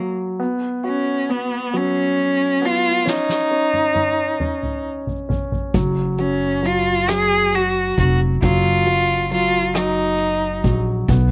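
A gentle, unhurried six-eight sway carries this short, romantic and heartfelt pop ballad fragment, cut from a longer piece. A bowed solo cello sings the melody up front, focused and close with expressive vibrato, while a concert grand piano accompanies beneath it with an intimate, polished tone, deep bass, long sustain and audible action noise. A soft-mallet drum kit enters at 3.1 seconds with a fill across hi-hat, kick, rim click, snare and toms, its fat snare and boomy kick carrying a natural hall quality. At 5.7 seconds a pizzicato upright bass joins with a woody, thumpy low end from steel strings. The harmony drifts from Bsus2 through a rootless C#add11 to D#m/F#, and the overall sound is dry and open, with little reverb.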